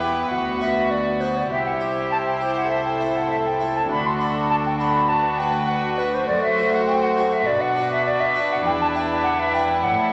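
A silver concert flute sings a pure, crisp-edged melody from the outset alongside a gut-string violin section in period style, in this brilliant, festive baroque-style concerto movement at 101 BPM in 4/4, heard as a 10.1-second cut from a longer piece. A second violin section adds a close, lightly vibrato inner line while a dark, distant viola section and a Flemish-style harpsichord, full-bodied in the background, fill the accompaniment over a nasal, reedy cello bass. The whole ensemble sits in a wet concert hall reverb as the chords move through Bm/D, C and F#dim before landing on E5 at 8.6 seconds.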